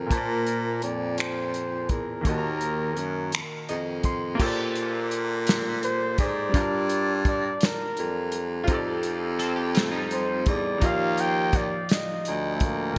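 A velvety flugelhorn carries the melody in this tender, sensual slow R&B piece in a straight six-eight, its pop-style line shaded with vibrato, scooped notes and a smooth top, and trailed by a delay. Beneath it, a baritone saxophone plays the bass in a forceful, punchy jazz style, bending into its notes with a quivering tone. A brilliant baby grand piano supplies intimate chords over lush extended harmonies, its action noise audible, and steps forward with a fill at 3.3 seconds. The acoustic soul drum kit sits up front with a tight kick, a medium-tuned snare, hi-hat, finger snaps and crash cymbal, its dry, rolled-off sound pumping through a gated reverb. At 9.4 seconds a twangy, fingered electric guitar on the edge of break-up slips in briefly with a second line coloured by analog chorus, all within a plate-reverb glow and a glossy 1980s-style digital sheen, the passage cut from a longer piece.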